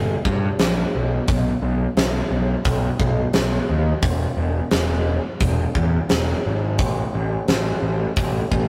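A fuzz-soaked, picked electric bass anchors this short classic rock passage, its bright, overdriven tone sitting up front and growling across a range of E1 to G2. Just after the bass opens at 0.0 seconds, a huge arena drum kit joins at 0.3 seconds, its acoustic hi-hat, punchy kick and fat snare filling a pumping hall sound that also sits close to the listener. The mood is driving and sunny, carried by a straight 4/4 feel that runs steadily through a single section to the cut at 8.7 seconds. Light reverb and warm saturation give the whole a rough, rehearsal-room character, as if the two players were caught mid-jam in a longer piece.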